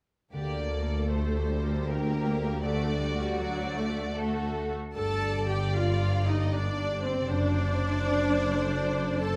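Melancholic and elegiac, this slow romantic orchestral movement in G minor moves at 78 BPM in a rubato 3/4, cut from a longer piece. From 0.3 s, a smooth violin melody with light vibrato sings, paired with a more distant, focused second violin line, while rich violas sit up front with accompaniment and close cellos carry the bass alongside warm double basses. A mellow, ringing harp adds fingerpicked arpeggios in the background, and moderate recital-hall reverb surrounds the ensemble as the music moves into its second section at 5.0 s.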